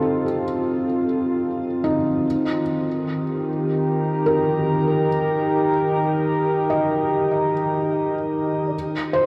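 Serene ambient music in Eb lydian at 74 BPM, this excerpt opens on a warbly, nostalgic tape-like pad holding sustained chords up front with chorus and shimmer reverb, while a felt-muted upright piano plays soft, intimate arpeggios with audible action noise, shimmer reverb and delay. The harmony moves from F to Eb at 2.3 seconds, and at 8.7 seconds a very quiet, airy alto flute with vibrato enters distantly over an F5 chord, its tone slightly unsteady. A dark production sits in a wet cathedral reverb with a long 5.6-second decay.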